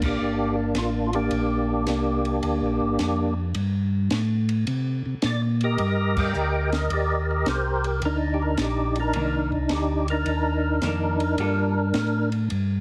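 Soul jazz organ trio in G minor at 107 BPM with a late-night, soulful swing, where a fat, lightly overdriven percussive tonewheel organ carries the melody through slow rotary speaker, chorus vibrato and plate reverb over a round, mellow organ bass and a small, dark-cymballed cocktail kit with a high-tuned snare, a clean hollow-body guitar adds brief accompaniment from 9.2 to 11.7 seconds, band accents land at 0.0 and 6.1 seconds, and the whole passage has a heavily compressed radio sound.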